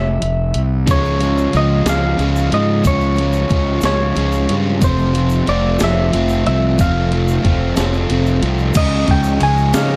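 Jangly and wistful, this slow indie rock passage in 6/8 at 61 BPM sits in a dark, warm production, with a twangy, compressed clean electric guitar carrying the melody through slapback echo over a growly, punchy fuzz bass pushed up front. A gated 80s drum machine with a thumpy kick and gated-reverb snare starts almost at once, and from 0.9 s two overdriven electric guitars add picked riffs, one crunchy and the other touched with subtle chorus and slapback echo, while a grainy egg shaker ticks in the background. The harmony moves from Db to Fmaj7, and at 8.8 s a buzzy vintage combo organ with heavy vibrato slips in behind on a sustained Dbadd9 before this fragment of a longer piece cuts off.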